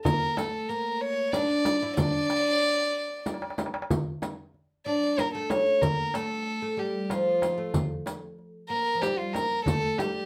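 A soft-attacked violin leads this soulful, melancholic Arabic maqam ensemble piece, its airy, floating sul tasto tone sitting close and up front as a single bowed player carries the melody between F4 and D5. Set in D maqam nahawand at 94 BPM in a straight 3/4, this brief passage cut from a longer piece has a fretless, plectrum-plucked oud with woody double strings supplying a deep second line beneath it. The percussion pairs a crisp, small metal-shelled darbuka played with soft hands against a dry, close frame drum, while a riq's bright jingles sit further back in the background. A drum fill arrives from 3.3 to 3.9 seconds, leading into a new section that runs from 3.9 seconds to the close. The band plays live together in one room, bathed in a wet studio reverb with a short half-second decay.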